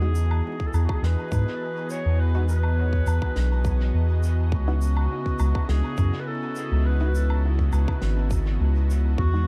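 A lightly swung 103 BPM groove in 4/4 carries this spacious, hazy ambient dub excerpt in C# minor: a tight electronic kick enters at 0.6 seconds, with brushed snare, shaker and woodblock drifting in echo, as a deep, round sub bass sits up front. A smooth, warbling analog pad holds sustained chords that move from Emaj9 to C#m11 at 4.5 seconds, while muted, detuned chord stabs pass through phaser and dub echo in the background. Above them, a distant, roomy clarinet plays a soft, classical-style solo melody trailing dub echo, all set in an echo-heavy mix with small room ambience and vinyl crackle.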